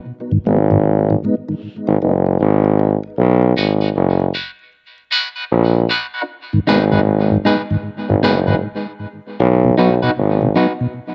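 A clear, punchy tuba with scooped notes sits up front, carrying the low end of this deep, heavy reggae excerpt at 77 BPM in G# minor, swung on the sixteenths. A mellow, round tonewheel organ with chorus vibrato, slow rotary speaker and tape echo fills out the opening break under a filter sweep, and a dark, slightly broken-up electric guitar with tremolo and tape echo enters at 3.6 s, also up front. The harmony moves between G# minor and B, with a stop at 8.6 s before the music resumes, all set in light studio reverb.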